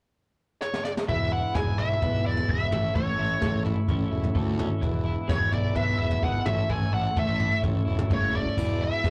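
Kaleidoscopic and trippy, this psychedelic rock excerpt at 128 BPM in A major opens with a bluesy, distorted lead guitar wailing through wah and dark, smooth brushed drums with a boomy kick entering at 0.6 seconds, then at 1.1 seconds a bright, clean twelve-string electric guitar riff shimmering with harmonic tremolo, a round, fuzzy overdriven bass and a mellow vintage combo organ holding spring-reverbed chords in the background join over an E to A progression, all captured with rough rehearsal-room tube saturation and a drum fill near 8.1 seconds.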